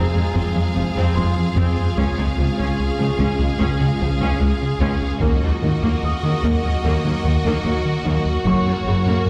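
Brooding and vast, this slow 74 BPM hybrid orchestral and electronic film cue builds over a chord movement from Fm to Db, Ebm and Gb, with a bright symphonic violin section carrying the melody above a rich studio violin line, a soft-edged viola section, and clear cellos and smooth double basses anchoring the low end. A rubbery, hollow square-wave bass riff, a glassy FM pad with ensemble chorus and its own reverb, and a felt-muted upright piano, dark and boxy with audible action noise and digital delay, thicken the texture in the background. A taiko ensemble strikes with heavy sticks from 5.2 to 6.8 s, all set back in a wet scoring-stage reverb in this short cut from a longer piece.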